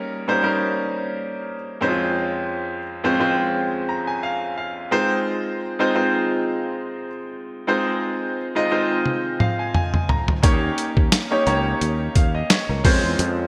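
A clear, polished baby grand piano opens this glossy, nostalgic slice of 1980s-style pop, its up-front chords carrying a lush chorus and drifting through Eb7, Dbmaj7/F and Ab6 with a light swing. The piano adds a short fill at 3.5 seconds, then another at 9.1 seconds, when a dusty soul sampler-style drum kit arrives with its own fill. Those drums sound compressed, gritty and tape-warm, with a thumpy kick, a medium-tuned snare, hi-hat, tambourine and toms sitting up front. At 10.4 seconds a sustaining fretless electric bass joins low in the mix, growly and punchy with a direct, amped tone, as the harmony returns to Eb7 and settles on Dbmaj7. A wet hall reverb and bright digital production give the whole passage a sheen that fits its retro gloss, and it cuts off as part of a longer piece.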